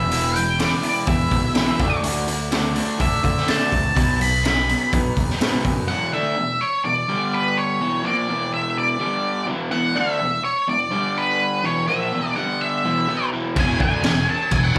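Heard through a club PA with the room's ambience and light reverb around it, this fragment of quiet-loud alternative rock moves at 125 BPM in a straight 4/4 with a restless, anthemic mood. Up front, an octave-fuzz lead guitar carries the melody through distortion, slapback echo and analog delay, opening with a solo over E, D and B chords. A crunchy, bright overdriven guitar plays a double-tracked riff throughout, while a twangy, clean guitar adds fingered arpeggios in the background. A growly fuzz bass and a raw garage drum kit, with its high-tuned snare and boomy kick, drive the opening until all three stop at 5.9 seconds, leaving the guitars over alternating E5 and G5 power chords. At 13.6 seconds the bass and drums return, joined by a scooped, compressed distorted guitar playing a riff of its own in the background as the harmony lands back on E.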